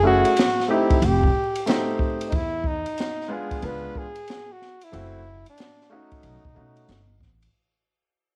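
Jazz-hop with a cool, smoky swing, this fading clip sets a breathy, mellow flugelhorn melody over a polished grand piano and a woody, thumpy pizzicato upright bass, while an open jazz kit with dark cymbals, a high-tuned snare and a boomy kick joins at 0.2 seconds, the horn, piano and drums carrying cassette-tape colour beneath light studio reverb and vinyl crackle.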